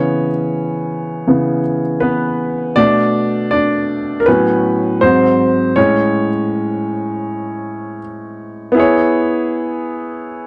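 Bittersweet and silky, this short soul excerpt cut from a longer piece moves at an unhurried 80 BPM in 4/4, with a gentle swing on the sixteenths. A lone grand piano carries everything, its tone warm and up front, ranging from G#2 up to D5. The harmony drifts through C#m7, Bm7, A6 and G#7 before settling on Amaj7, then returns to C#m7 at 8.8 seconds as a new section begins. The piano's solo passage runs from the opening to 8.8 seconds, and the recording ends at 10.5 seconds. A modest booth ambience with a short decay keeps the sound intimate, and the top end is softly rounded off, giving the whole a mellow, closed-in sheen.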